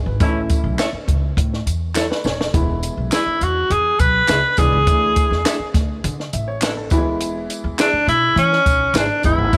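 Uptempo 1960s-style soul at 103 BPM with a warm, danceable mood: a punchy cocktail drum kit with a high-tuned snare, thumpy pizzicato upright bass, an intimate baby grand piano with audible action noise, and background tambourine and handclaps kick off with a band accent and a drum fill that ends at 2.5 s, while a dark semi-hollow electric guitar adds clean stabs through lush chorus, a mellow, tight horn section adds brief second-line touches, and a clear tenor saxophone with light vibrato carries the up-front melody from 3.1 s, all within light small-room ambience.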